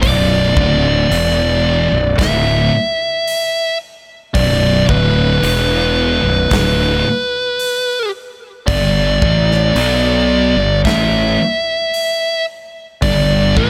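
Dry and close with little reverb, this brooding, sludgy stoner and doom metal excerpt crawls at 55 BPM in B minor. A compressed, distorted fuzz lead guitar carries the melody up front, while a growly, bright fingered bass with overdrive and tube saturation sits forward beneath it and two picked fuzz rhythm guitars, one dark and one warm, grind out the riff in the background. A big acoustic rock kit with a punchy kick, medium-tuned snare and hi-hat keeps time as the harmony shifts from Bm to G5 at 8.7 seconds.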